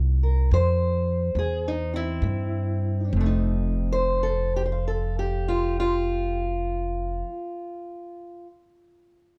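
Close, detailed and nearly dry, this soulful, gritty excerpt of acoustic country blues moves at 65-74 BPM in a swung 4/4 in F mixolydian, slowing over its first 3.1 seconds on a C chord before shifting to F9, with a dark, boxy, fingerpicked parlour steel-string guitar carrying the melody up front over a woody, thumpy pizzicato upright bass that stops at 7.2 seconds while the guitar carries on to 8.5 seconds.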